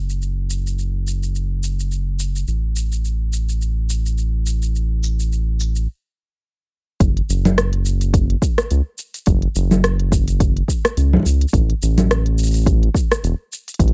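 Swung 16ths at 106 BPM in 4/4 drive this wistful, intimate folktronica piece in F# minor, where an up-front organic electronic drum kit of congas, smooth hi-hat, rim click and shaker, roughened with overdrive, plays alongside a round, mellow analog bass that evolves through sawtooth, sine and ring-modulated tones, until a stop from 5.9 to 7.0 seconds gives way to a deep, overdriven electronic kick drum joining at 7.0 seconds in a dry, close mix.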